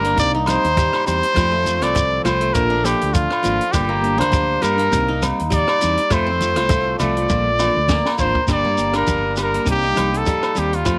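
Light reverb and small-room ambience frame this warm, danceable highlife guitar band excerpt at 101 BPM with a swung 16th-note feel, where an up-front pop-style trumpet with light vibrato carries the melody over a dark, clean semi-hollow electric guitar in the background, bright-edged fingerpicked qanun arpeggios with tape echo, a round fingered electric bass, and a dry compact cocktail drum kit with a high-tuned snare and punchy kick that plays a fill at 7.3 seconds, while soft-handed congas and grainy shekere join at 0.2 seconds and very quiet ringing agogo bells at 0.5 seconds.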